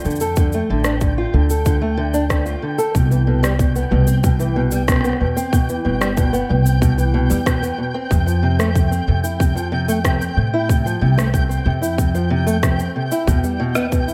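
A fingerpicked old ladder-braced acoustic guitar sits up front, its dark, boxy arpeggios passed through digital delay over a thumpy pizzicato upright bass in this wistful, intimate folktronica piece at 93 BPM in 4/4. Electronic cabasa and rim click play from the start, and a tight electronic kick enters at 0.4 s, both heard as if re-recorded in a large room, while a grainy, flickering granular texture with slow attack and long release hovers high above with its own reverb. The chords move from Dm to Cmaj7, F and Em under light reverb, digital ambience and vinyl crackle, and the passage is cut from a longer piece.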